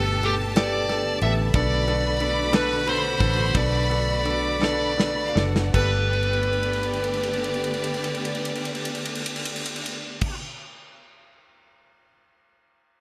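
A tender, heartfelt six-eight pop ballad excerpt in G major at 51-61 BPM, slowing down from 1.5 to 5.7 seconds, where a dark, overdriven lead guitar with delay sings the melody up front over a distant, intense violin section with delay carrying a second line, an intimate concert grand piano with audible action noise, lush bowed strings holding sustained chords, a round, foam-muted fingered electric bass, and a punchy acoustic drum kit of crash, ride, snare and kick that enters at 0.2 seconds and adds fills, all in a lush hall reverb with bright 1980s-style digital production as the chords move through Gadd9 and Bm7.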